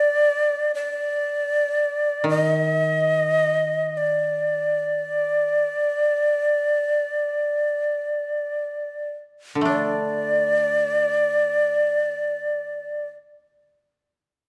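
A moderate recital-hall reverb surrounds this calm, austere passage of Japanese chamber music in free time, tuned to A4 = 441 Hz and cut from a longer piece. A close-miked, up-front shakuhachi carries the melody from the start, its breathy, bright bamboo tone marked by vibrato, a crisp attack and chiff. From 2.2 s a koto played with fingerpicks adds a dry, woody accompaniment beneath it, while the pace gradually slows through the first 9.7 s before a new section begins.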